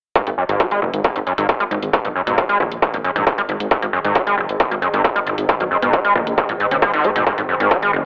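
A screaming, squelchy acid line leads this relentless, industrial slice of driving peak-time techno. Its resonant sawtooth tone sits up front, with a filter sweep, distortion, analog chorus, analog delay and sidechain pumping. Under it, a distorted, overdriven kick sits up front at 135 BPM in a straight 4/4 from 0.2 seconds, with a layered, overdriven electronic hi-hat set much lower. A thick, menacing detuned saw bass with a beating, sustained tone also pumps to the sidechain. From 2.3 seconds, a swarming drone of detuned, granular sines enters with a slow attack in the background, carrying its own reverb and a long release. Cut from a longer piece and tuned to A4 = 435 Hz, it has a moderate spring reverb and a lo-fi, telephone-like home cassette sound, with tape colour on the acid line, drone, kick and hi-hat.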